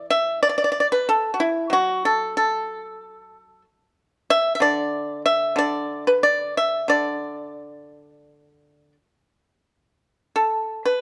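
Close, detailed miking and a light touch of room reverb place a single pipa up front, so every pluck sounds immediate and intimate. This brief solo excerpt of Chinese traditional music carries an elegant, serene mood, unfolding in free, rubato time within the D gong mode. The pipa is played with fingerpicks, and its acoustic tone comes across as mellow yet dry and percussive, spanning from D3 up to E5. It carries the whole 11 seconds alone, with the opening passage giving way to a new section at 9.7 seconds before the excerpt cuts off.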